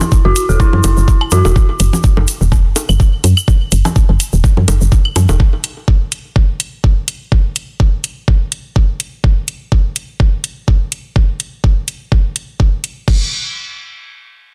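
Layered electronic congas, bongos, cowbell and claves, along with a grainy, bright acoustic egg shaker, open this hypnotic, clinical minimal techno excerpt at 125 BPM in F# minor with swung 16ths, joined at once by a knocking, up-front electronic kick, an eerie, inharmonic detuned synth bell riff with chorus and delay that rings only until 1.4 s, a woody, round FM bass pumping underneath, and a tape-warm garage kit with metallic hats and crash, before the hand percussion, shaker and bass drop away at 5.4 s and the kick and kit drive on to 13.2 s.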